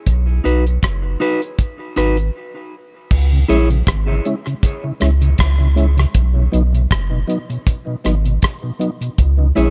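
A dry, damped 70s drum kit sets a slow, swung 79 BPM dub reggae groove in 4/4, its tight kick, rim click, hi-hat and dark crash cymbal sitting up front beside a deep, round sub bass ranging from F#1 to C#2. Dark, clean fingered electric guitar with dub echo colours the opening in C# dorian before a break at 2.3 seconds, and from 3.3 seconds a soft, flute-like tonewheel organ with chorus vibrato, key click and dub echo takes over the accompaniment as the chords move between B and C#m. The studio reverb gives this cut from a longer piece a meditative, spacious air.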